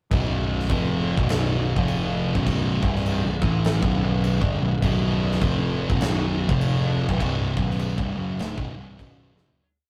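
A swung 4/4 pulse at 101 BPM drives this heavy, sludgy stoner and doom metal piece: an up-front, double-tracked fuzz guitar grinds out a thick power-chord riff around B5, F5 and Bm; a growly, overdriven picked bass doubles it in quarter notes from the background; and a big acoustic rock kit with a punchy kick, medium-tuned snare and bright cymbals holds a half-time groove, all in a rough rehearsal-room sound with tube saturation and a moderate booth ambience, fading out from 7.2 s to the end at 9.6 s, with a drum fill at 9.3 s.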